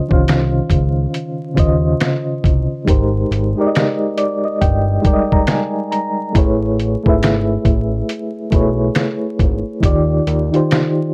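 Nostalgic and mellow, this lo-fi hip hop clip from a longer piece rests on a reedy electric piano with fast tremolo and a cassette haze, sitting up front and playing a fill from 3.7 to 6.4 seconds over chords moving from Dbmaj9 through Abmaj9 and Amaj9 to Ebmaj9. A fat analog bass with a sawtooth-and-square tone and a moving notch filter holds the low end, while a dusty, gritty sampler-style drum kit of finger snaps, hi-hat, thumpy kick and fat snare sits compressed and forward in a swung groove. Moderate studio reverb, worn warbling tape with pitch drift, and vinyl crackle give the whole recording an aged, faded feel.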